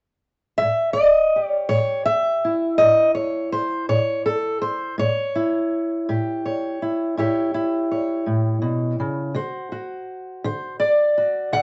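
A dark, up-front fingerpicked steel-string acoustic guitar plays alone from 0.6 to 11.6 seconds in this swaggering, rollicking acoustic country blues fragment cut from a longer piece, rolling along in 12/8 at 55 BPM in A mixolydian (tuned to A4 = 442 Hz), ranging from A2 up to F#5 over an A7 chord that shifts to D7 at 9.3 seconds, all set in a moderate studio reverb with a softly rolled-off top end.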